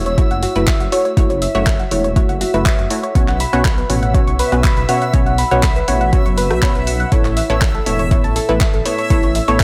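An up-front, overdriven electronic kick anchors this dreamy, driving progressive house excerpt. A small-room deep house kit of handclaps, hi-hat and rim click sits beside it, while a rumbling detuned saw bass, soft round pluck arpeggios with chorus, cassette tape colour and tape echo, and lush unison pluck stabs all pump against the kick over F#m7, Bsus2 and Aadd9. A reversed, granular swelling texture glimmers quietly on top.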